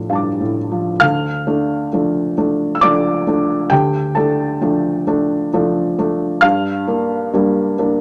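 Set in a moderate studio reverb, this short fragment of neoclassical minimalist piano features a solo felt-muted upright piano, soft, intimate and up front, playing in a melancholic, reflective D minor at 67 BPM in a rubato 3/4, moving from D minor to G minor at 6.4 seconds across a span from D2 to F6.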